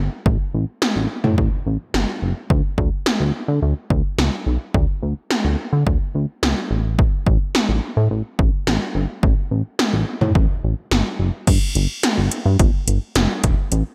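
Synth-pop at 107 BPM in a straight 4/4, this short cut from a longer piece feels nostalgic and bright, tuned slightly below standard pitch. A chorused synth bass sits up front from the start, its glossy pulse and sawtooth tones shifting with pulse-width modulation, with a fast attack and mellow sustained notes that range from E1 to D3. At 0.3 seconds the 80s electronic pad drums join, analog and tape-tinged, with a punchy kick, metallic hi-hats, crash cymbal and toms. The snare and toms carry a big gated reverb that gives them a clipped, booming snap, and the kit also sits close in the mix. A light reverb frames the whole, and the music shifts into a new section at 11.5 seconds before the excerpt ends.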